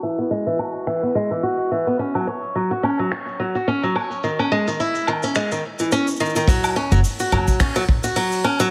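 Warm and pastoral, this short folktronica excerpt at 107 BPM in 4/4 with a 16th-note swing centers on a bright, boxy picked acoustic guitar playing up-front arpeggios through tape echo and a filter sweep until 6.5 seconds, over a soft brush kit of cabasa, finger snaps, hi-hat and woodblock, with a punchy kick arriving at 6.5 seconds and a woody, growly pizzicato upright bass touching F#1 at 6.9 seconds, all moving through Eadd9, F#5 and C#madd9 under light reverb and vinyl crackle.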